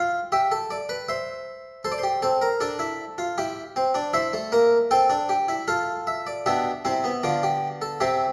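In a straight 3/4 at 78 BPM, this short passage moves with a measured, stately step. It is a classical, baroque-style four-part fugue played by a solo harpsichord throughout, cut from a longer piece and lasting about 8.3 seconds. The instrument ranges from B2 up to G5, and its Italian-style voice is plucked and brilliant, with octave strings adding shimmer and a mid-forward character that keeps it up front. The harmony opens on G7 and settles through C and F before a new section begins at 6.5 seconds on G7/B, lending the music an elegant poise. A moderate recital hall reverb surrounds the harpsichord, heard from further back in the room, giving the playing a graceful sense of space.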